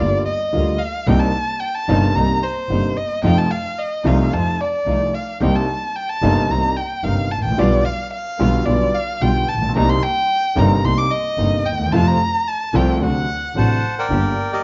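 Heard through a moderate large-studio reverb, this dark, warm production keeps its top end soft, with nothing above 7.5 kHz. It is a sultry, dramatic tango cut from a longer piece, in four with a rubato feel. A bowed solo violin sits up front from the start to 13.8 seconds, expressive and soft-attacked, with vibrato and portamento. Beneath it, a concert grand piano accompanies with an intimate, vintage tone, deep bass and audible action noise. A lush, woody string section adds stabs in the background, and a bowed double bass gives a biting, nasal, earthy line with an airy bow and light vibrato. Just as the violin finishes, a reedy, bright bandoneon enters at 13.6 seconds with the melody, dry and up front, as the harmony moves through Cm7, F7 and G7/B before settling on Gm.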